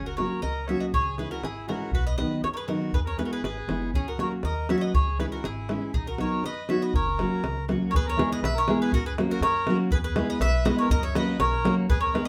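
A straight two-beat pulse drives this exuberant Balkan wedding-band folk piece, cut from a longer performance and lasting just over 12 seconds. The mandolin carries the virtuosic melody up front, its bright, picked double strings sounding woody and acoustic. Also up front, a fingerpicked nylon-string guitar with fresh strings supplies deep classical accompaniment. A reedy, mid-forward accordion plays a second line, and a pizzicato upright bass with steel strings adds a woody, warm low end. The davul keeps the beat tight and close, while a wet small-room reverb places the band a little further back. The harmony cycles through F#, C#m, B and E in the first section, then shifts at 7.9 seconds to a second section that alternates between E and F#.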